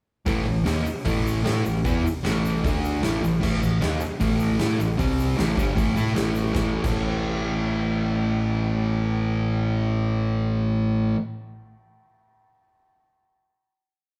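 A raw, roomy live take with a large studio's reverb carries this rowdy garage rock piece at 154 BPM, where an up-front, double-tracked fuzz guitar drives a power-chord riff over A5, D5 and C5, doubled by a dark, round overdriven fingered bass in driving eighth notes, while an oversized low-tuned acoustic drum kit with a boomy kick and fat snare pounds a garage stomp groove and a very quiet, grainy egg shaker sits close and dry until the drums stop at 6.9 seconds and the guitar and bass hold a final chord to 11.2 seconds.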